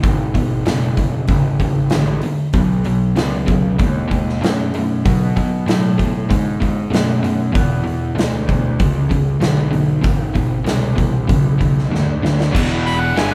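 A cranked, double-tracked stack guitar drives an overdriven low riff up front through this gritty, swaggering blues rock and southern rock cut in E mixolydian at 96 BPM. It plays over a growly fuzz bass and a punchy, big-room acoustic drum kit whose fill at 11.9 s closes the section. A bright, close-miked harmonica with light vibrato then enters at 12.9 s, and the whole trio is captured live in one room with moderate studio reverb.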